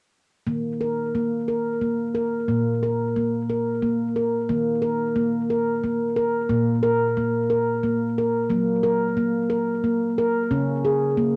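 Gentle and hypnotic, this short meditative world excerpt in a straight 3/4 features a solo handpan, up front and ringing with a mellow stainless-steel tone under soft fingertips, colored by cassette tape and analog delay in a wet small room, playing alone from 0.5 to 11.4 seconds as it moves from an opening passage into a second section at 4.5 seconds.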